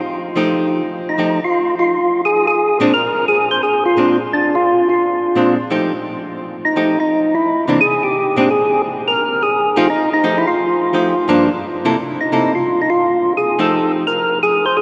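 A swinging 4/4 at 172 BPM drives this soulful jazz excerpt, cut from a longer piece and bathed in the long, wet reverb of a church or concert hall. A dark, clean hollow-body archtop guitar, picked and placed up front, accompanies from 0.4 seconds over chords such as F9, Bb9, C9 and Gm7, while a fat, lightly overdriven tonewheel organ with third-harmonic percussion, vibrato and a slow rotary speaker carries the melody. The guitar stops at 14.0 seconds, leaving the organ to finish alone at 14.8 seconds.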